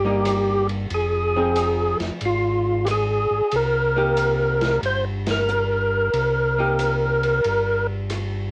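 A lo-fi home cassette recording with light reverb captures a soulful, late-night soul jazz organ trio, cut from a longer piece and swinging at 92 BPM in 4/4 in C minor. Up front, a fat, lightly overdriven tonewheel organ carries the melody between F4 and C5, its third-harmonic percussion and key click turning through a slow rotary speaker with chorus vibrato. A second tonewheel organ supplies the bass from F1 to C2, smooth and clean with tube saturation and its own slow rotary. A dark, hollow-body archtop guitar, picked and amplified, accompanies until 7.4 seconds over changes that move from a rootless Cm7 to Fm7 and back to Cm7. Entering at 0.3 seconds, a muffled vintage drum kit in a small room sits low in the mix on hi-hat, ride, rim click and a medium-tuned snare, and the band hits an accent together at 5.2 seconds.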